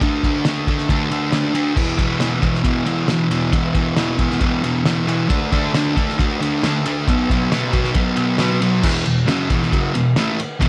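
A fuzz guitar sits up front, its distorted, double-tracked riff running between E2 and D4 and moving through D5, E5 and B5 power chords before settling on E5 at 8.8 seconds. Behind it, a cloth-damped acoustic drum kit thuds along at 136 BPM in straight 4/4, its fat snare, tight kick and dark, muffled crash and ride cymbals sounding gritty and lo-fi in a small room. This swaggering, raw garage rock clip is cut from a longer piece and carries a light reverb.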